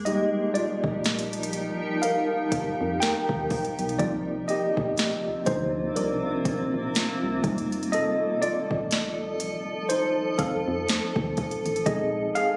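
Late-night and longing, this slow contemporary R&B excerpt at 61 BPM swings its sixteenths gently as a worn, slightly out-of-tune tine electric piano takes the lead up front with a light overdrive, over a cloudy, evolving granular pad, a punchy, round FM bass, an overdriven electronic drum kit with soft kick, sharp snare and crisp hats, and a very quiet, detuned pluck with chorus entering at 6.0 s, moving through F9sus4, Cm11, F7 and Bb9sus4 in a lightly reverberant room captured on a phone.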